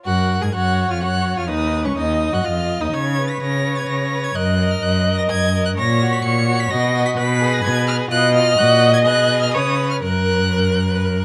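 The cello sits up front with a warm, expressive tone, its bowed bass line gliding between notes with soft attacks, portamento and vibrato. Above it, the first violin carries the melody high in its range, close and clear, with a smooth, even sound and vibrato. The second violin plays a supporting line in a lower register, while the viola adds a more distant accompaniment, both bowed with a smooth, even sound and vibrato. This graceful, cheerful passage comes from a quick classical-period movement for string quartet, taken at 127 BPM in 3/4 with a flexible, rubato feel. It is in F# major, tuned to A4 = 441 Hz. The harmony moves from F# through B and G#m colours toward a C#7sus2 at 9.5 seconds before settling back on F# at 10.0 seconds, all within light reverb. The recording is an excerpt cut from a longer piece.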